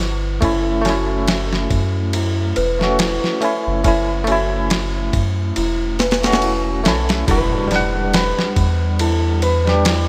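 A dusty soul sampler-style drum kit sets a slow 70 BPM trip hop groove in 4/4 with a light 16th-note swing, its thumpy kick, medium-tuned snare and ride cymbal sounding gritty, compressed and up front. Beneath it, a soft dub sub bass holds a deep, round tone with a touch of tube saturation, while a delicate celesta plays sweet arpeggios through tape echo from the background. A bright, barky tine electric piano carries the accompaniment with tremolo and tape echo, moving from F#m7 to Em9 and giving the brooding, hypnotic mood its bell-like shimmer. At 6.9 seconds a dark, fingered electric guitar enters with a short melody coloured by vintage 12-bit sampler grit and echo, and an electronic impact sounds in the background from 7.3 seconds as the passage shifts into its second section. A lush hall reverb and bright 1980s-style digital production surround this short fragment of a longer piece.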